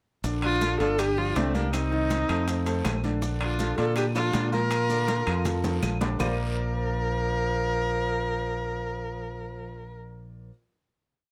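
A straight 4/4 Afro-Cuban jazz groove drives this sunny, lively piece: very quiet congas and round, hard-handed bongos sit alongside ringing timbales, woody claves, a raspy guiro and grainy maracas in the background, while a punchy, bright fingered electric bass plays a tumbao that anticipates the chords and a deep-toned grand piano plays a montuno in octaves. Up front, a dark, bowed viola with vibrato, portamento and slapback echo carries a motif-based melody of call phrases, shadowed by a breathy, whispered tenor saxophone harmony line mostly in thirds. After a drum fill at 5.1 seconds, the percussion drops out at 6.3 seconds, leaving piano, bass, viola and saxophone on a final chord in a close, dry recording.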